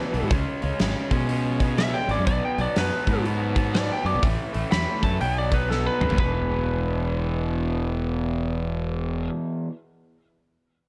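Cut from a longer piece, this gritty, driving blues rock and southern rock recording has light studio reverb, with a punchy kick and fat snare from a huge, hall-sounding arena drum kit placed up front. A bright, double-tracked garage guitar riff and a fuzzy fingered electric bass push the swung groove, while a dark, slightly broken-up, compressed lead guitar carries the melody. The drums play a fill at 5.7 seconds and stop at 6.3 seconds as the second section begins, leaving the guitars and bass.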